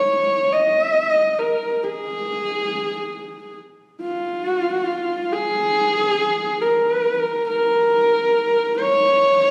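Unfolding in free time, this short excerpt of Mongolian traditional music drifts along with a windswept, vast mood. A single horsehead fiddle carries the melody for the full 9.5 seconds, bowed on horsehair strings and set up front. Its tone is dark and woody with a husky grain, shaped by light vibrato and gliding portamento as it moves between F4 and Eb5 in a Bb yu mode. A moderate reverb, like that of a scoring stage with a 1.9-second tail, gives the lone line a sense of open space. Captured on a phone in the room, the sound carries a touch of studio ambience, and the passage is cut from a longer piece.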